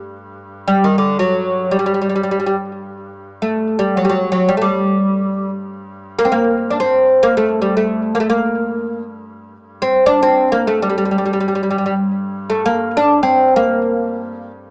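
A woody, deep oud sits up front, its plectrum-plucked double strings and fretless voice carrying a soulful, longing melody in free time through maqam nahawand on G from 0.7 s. Beneath it, a single bowed double bass holds a quiet, focused G drone with a bright edge and vibrato across the whole 14.7 seconds. The short passage is cut from a longer piece and has the intimate feel of a small room, heard as if through a small speaker.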